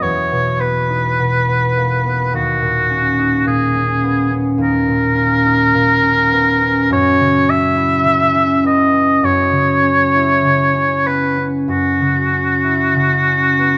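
Close, detailed microphones and a light reverb frame this brief passage of classical impressionist chamber music, an oboe and harp duo cut from a longer piece. The mood is pastoral and luminous, unfolding slowly at 47 to 54 BPM in 4/4 with a rubato feel. The clear oboe carries the melody from F#4 to E5, its tone touched with light vibrato and a roomy, distant quality even as it sits up front. The concert harp, also up front, supplies fingerpicked accompaniment from D#2 to E4, acoustic and mellow with ringing strings. Both parts sound together across the full 13.8 seconds, with the harmony moving from E5 to D#m7 at 2.3 seconds and to F#7sus4 at 6.9 seconds.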